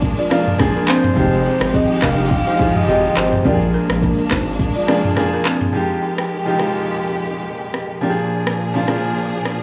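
Mellow and hypnotic, this afrobeats clip rides a lightly swung 4/4 groove, moving between Bb7 and Fm9 chords. An up-front, electronic afro-pop drum kit with a deep kick and smooth hats carries handclaps, rim clicks, shaker and toms throughout, while a clear, somewhat boxy grand piano plays accompaniment and a distant, lush string section holds bowed chords with vibrato and portamento. A round, dark analog bass anchors the low end until about 4.6 seconds, then drops away. A woody, buzzing balafon played with soft rubber mallets sits in the background with a delayed riff from 0.2 to 5.6 seconds, and a soft, full-bodied synth lead layered with a sub octave sings a brief melody through chorus, phaser and delay. The whole has a dry, gritty hardware character with transformer saturation and a small-room ambience.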